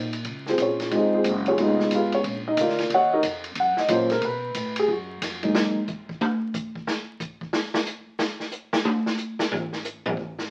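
Playful and warm, this brief swinging jazz piano trio fragment in Db major moves at a brisk 181 BPM in 4/4, cut from a longer piece. A dark, mellow concert grand piano sits up front carrying the melody, its smooth, vintage tone reaching into deep bass as it moves through Dbmaj9, Fm7b5 and Ebm9 harmonies. Beneath it, a pizzicato upright bass with woody, thumpy gut strings anchors the low end until both piano and bass drop out around 5.7 seconds. The open jazz drum kit, natural and close with dusky cymbals, a medium-tuned snare and a boomy kick, then carries on alone with hi-hat, ride, snare and toms until 10.4 seconds. The whole performance sits in moderate studio reverb and comes through the crackle of a very old 78 rpm record, lending it an aged, nostalgic character.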